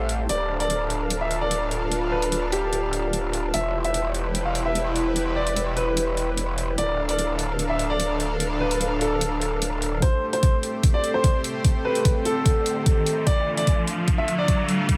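Heavy wobble dubstep with a chaotic half-time feel, cut from a longer piece: an intimate, boxy grand piano with tape echo carries the melody over lush supersaw chords and a mellow, lo-fi tape-like pad, both pumping with sidechain, while an aggressive, detuned growl bass with chorus and overdrive wobbles up front until 10.0 s, when a knocking, overdriven kick joins the bright, overdriven hi-hats for a build-up with a filter sweep and an electronic riser from 11.5 s.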